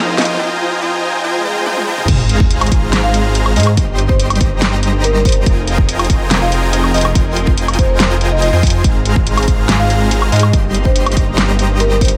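Future bass in F minor at 142 BPM with a half-time feel, this lush, dreamy excerpt opens with a short build-up of riser, swell and drum fill before the drop lands at 2.1 s with a punchy electronic kick, a sub drop impact and a loop of Fm11, Ab69 and Cm7/G chords. A huge, compressed supersaw riff and a thick, saturated detuned saw bass with chorus sit up front, both pumping against the sidechain. A pop kit with a fat snare, crash, hats, toms and woodblock drives the groove, while a woody, dry marimba melody with tape echo settles into the background from 3.0 s over very quiet, clear bowed strings holding sustained chords, all in a light reverb.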